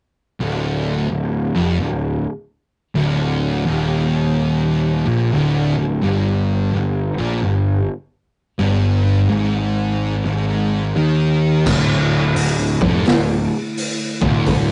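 Stoner and doom metal with a brooding, hypnotic swing, built on two thick fuzz guitars, one up front and one behind, grinding a riff over a growly, overdriven picked bass from 0.4 seconds through chords of Dm and Ebadd11/G, until at 11.7 seconds a gritty, punchy garage drum kit crashes in and a piping tonewheel organ adds sustained chords through a slow rotary speaker with key click, all caught in a rough rehearsal-room sound with a rolled-off top.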